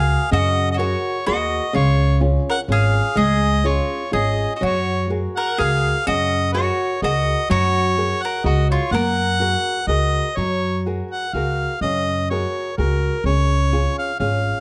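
Closely miked with light reverb, this excerpt of a passionate, wistful Italian folk serenade in 3/4 at 126 BPM in F# major sways with swung, rubato phrasing as a mellow, smooth-topped harmonica sings the classical-style melody up front, a bright, picked bowl-back mandolin adds a double-strung second line until 9.9 s, a fingerpicked flamenco guitar with fresh strings supplies the accompaniment, and a woody, growly pizzicato upright bass sits prominently beneath, all over a harmony that moves between F#add9 and C#.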